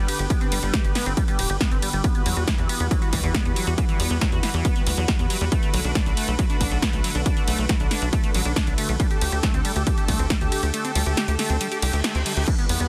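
Soaring and euphoric, this uplifting trance excerpt runs at 138 BPM in 4/4, with a lush, detuned unison pad holding sustained chords over G, Emadd9, Bm7 and Dsus4 while a squelchy, resonant acid bass spins arpeggios through dub echo and a tight, punchy sequencer bass drives the low end, all three pumping against the sidechain. An overdriven, up-front electronic kick anchors a layered techno kit with a punchy snare, hi-hats, ride and crash, all in a dense, heavily limited and fairly dry mix. The piece opens on a background sub-drop impact, and the kick drops out at 10.7 seconds as a reverse cymbal sounds from 11.8 seconds.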